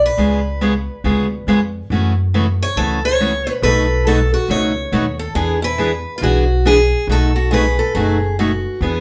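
Swinging and lively, this excerpt of acoustic string swing at 139 BPM sets a woody, growly upright bass under a bright, boxy picked steel-string guitar melody with audible finger squeak, a warm picked guitar accompaniment moving from C#7b9 through F#m7, B7 and E7, and a second picked guitar line with fresh-string brightness entering at 3.5 seconds, all heard from further back in a small, reverberant room.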